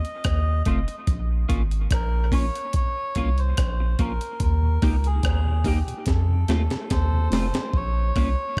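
This hypnotic, spacious dub reggae excerpt in Bb dorian at 72 BPM opens with a gritty, compressed sampler-style drum kit with a thumpy kick, a round triangle-and-square sub bass up front, and a reedy, breathy melodica carrying the melody through dub echo, all in an echo-heavy digital ambience. A slightly broken-up, scooped electric guitar enters at 0.7 seconds with analog chorus and dub echo, while a very quiet, flute-like tonewheel organ with key click appears at 4.6 seconds. The chords move from F to Bbm, Eb and back through F, with a drum fill from 6.1 to 7.7 seconds.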